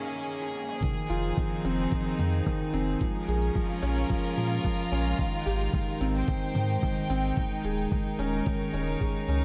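A felt-muted upright piano carries this moving, intimate piano-and-strings electronica piece in F minor at 110 BPM, its mellow, hushed riff echoed by delay and edged with audible action noise, while an up-front chamber string section holds rich, earthy sustained chords with light vibrato. Overdriven electronic toms and shaker play a short fill from 0.4 s, then a thumpy, muffled, pitched-down kick drops in at 0.8 s and a round, deep sine sub bass pumps against it from 1.1 s. The chords move from Fm7 through Bbm7 and Abmaj7 to a suspended Eb7sus4, all within a light reverb, in this section cut from a longer piece.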